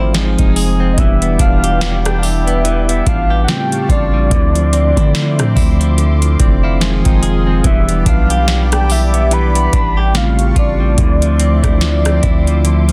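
A deep, sine-toned 808-style bass sits up front in this late-night, sensual contemporary R&B excerpt, its long notes reaching as low as E1 beneath a booming analog drum machine. The drums bring a deep kick, a tonal snare with soft clipping, metallic hi-hats and rim clicks, with the beat entering at 0.1 seconds and carrying a gentle swing on the sixteenths. Above them, a soft octave-layered synth lead carries the melody with a round, mellow tone, coloured by chorus, delay and vibrato. A bell-like tine electric piano provides bright accompaniment and plays a fill from 6.0 to 7.6 seconds, while a clean, direct-recorded electric guitar picks arpeggios through a harmonic tremolo. A smooth, detuned analog pad with chorus holds sustained chords in the background as the harmony cycles twice through Fm7, Em7, A7alt and Dm9. The sound is dry and close, with a dense, heavily limited modern master.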